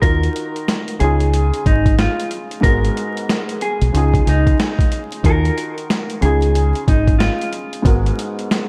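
A swung 92 BPM boom-bap groove in 4/4 drives this tough, reflective hip-hop fragment, where a gritty, pitched-down sampler kit with a thumpy kick and high-tuned snare sits up front beside a round, punchy fingered bass, while a woody, slightly detuned upright piano with cassette-tape wear comps through Ebmadd9, Dbadd9 and Abm7 and a clean, dark electric guitar with delay carries the melody until 7.5 seconds, all inside a dreamy plate-reverb haze dusted with vinyl crackle.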